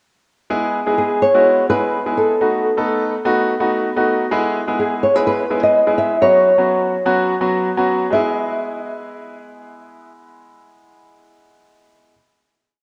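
A summery, upbeat pop piece in E major at 126 BPM, where a clear, deep-bassed concert grand piano plays syncopated, close-voiced chords with short sustain from 0.5 seconds, while an up-front, thumb-plucked flamenco guitar with audible finger squeak carries a motif-based melody of song phrases from 1.0 seconds, moving through a brief verse to a final chord at 8.1 seconds, all bathed in a lush hall reverb and the rough, tape-worn sound of a home demo.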